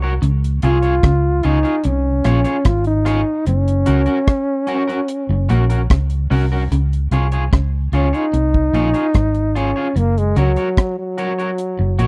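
Roots reggae at 74 BPM in Db major with a sunny mood, built on a dark, round, foam-muted vintage fingered electric bass and a deep, dry drum kit of tight kick, hi-hat and rim click, both up front, while a slightly broken-up, twangy electric guitar accompanies and a bright, clean electric guitar plays a low riff in the background, and a warm, smooth-topped trombone with vibrato carries the melody from 0.7 s before taking a punchy solo from 6.7 s, set in a close 1970s-style studio sound with little reverb over chords moving between Db and Gb.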